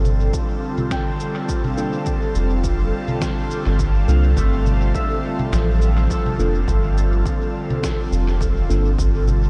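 A deep, round analog bass sits up front in this hazy, meditative ambient dub, under a soft, breathy pad with chorus and phaser, a ringing fingerpicked concert harp in the background with dub echo, muffled pitched-down electronic congas, shaker and snare also carrying dub echo, a punchy electronic kick from 0.3 seconds, and a very quiet, mellow tine electric piano adding stabs from 1.8 seconds, all in light reverb.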